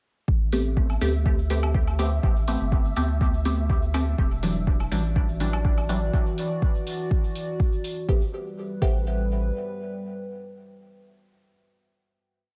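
A deep, overdriven kick and a soft, round sub bass open this cavernous dub techno piece at 0.3 s, the kick driving a steady four-on-the-floor beat while the bass holds long gliding notes under sidechain pumping. Muted, detuned chord stabs land on the off-beats, one shape moved in parallel, their filter sweeping under a phaser and trailing dub echo, while an overdriven open hi-hat and a tape-warm low woodblock, itself thrown into echo, fill out the hypnotic groove. High in the background, a grainy, flickering texture holds a single note through its own reverb. A dark, moody analog pad with a sub octave fades in slowly at 5.1 s, thickened by chorus and phaser. At 8.1 s the groove gives way to a final chord that the stabs and pad carry out, in an echo-heavy mix that stays dry of room reverb.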